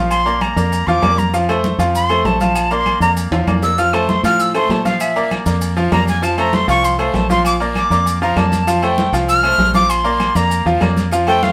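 A straight 4/4 salsa pulse at 196 BPM drives this joyful, festive Latin clip, cut from a longer piece and set in a wet studio reverb with the band playing live in one room. A breathy jazz flute carries the melody as a solo throughout, its metal tone reedy and straight with a crisp, chiffy attack, and it is the loudest part. Beneath it, a worn concert grand piano, up front and brilliant with audible action noise and deep bass, supplies the accompaniment over a punchy, foam-muted fingered electric bass recorded direct. The percussion layers thick-skinned, damped congas played with hard hands, ringing metal-shell agogo bells and timbales, woody vintage claves and grainy, mellow maracas, mostly tucked in the background, with a drum fill at 3.3 seconds and a raspy guiro entering very quietly at 3.8 seconds. The harmony alternates between Bb and F, colored by an Fadd9 at 8.7 seconds before returning to Bb.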